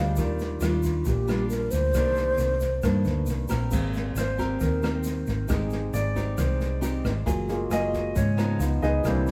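Bossa nova with an intimate, smooth mood, taken from a longer piece and played live by a band in a stone room with moderate reverb. A mellow, airy alto flute carries the melody up front with vibrato and tongued notes, close-miked and hollow in tone, until it stops at 3.3 seconds. From 3.7 seconds the clear grand piano takes a solo over harmony that moves from Abmaj9 through Gbmaj9 to Db9, while the fingerpicked nylon-string guitar adds classical colour with audible finger squeak. A round, dark, amped hollow-body electric bass sits prominently under the group. The acoustic jazz kit enters at 0.2 seconds with boomy kick, medium-tuned snare, rim clicks and dusky crash cymbals, joined by a grainy, bright tube shaker tucked into the background.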